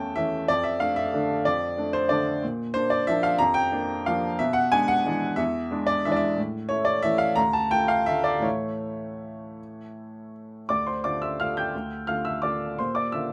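A clear upright piano carries this short classical waltz alone, its woody, natural tone sitting up front and close enough to catch fine detail. The piece is in D minor and 3/4, moving between 150 and 195 BPM with a rubato feel that gives it an elegant, nostalgic air. The piano spans a broad range from D2 to G6, and the harmony passes through Bb and a dominant-flavoured E7 over B before settling on A and returning to D minor. Around 10.7 seconds the music moves into a new section, which reaches Bb near 12.8 seconds before the cut at 13.3 seconds. A light reverb surrounds the instrument, keeping the sound intimate and true to life.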